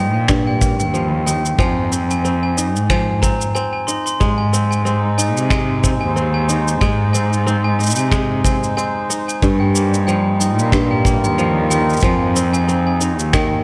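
A fingerpicked, crisp kora plays arpeggios alongside a bell-like glockenspiel struck with hard plastic mallets, both carrying tape echo, over a dark, bowed cello bass with vibrato that sits up front. Within a second a punchy acoustic kick and produced electronic finger snaps and shaker arrive in studio reverb, setting a pastoral, playful folktronica groove in Ab major at 92 BPM with a light swing on the sixteenths. At 4.2 seconds a reedy, breathing hand-pumped harmonium enters in the background with sustained chords, filling out this short excerpt in a lightly reverberant studio space.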